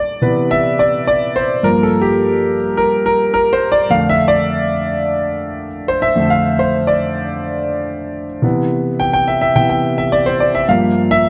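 In a straight 4/4 at 106 BPM, this nostalgic, romantic pop excerpt in C mixolydian features a solo concert grand piano, intimate and up front with deep bass and audible action noise, moving through Cmaj7, Gm7 and F6 before returning to Cmaj7 over 11.3 seconds, all set in a lush hall reverb with a dark production.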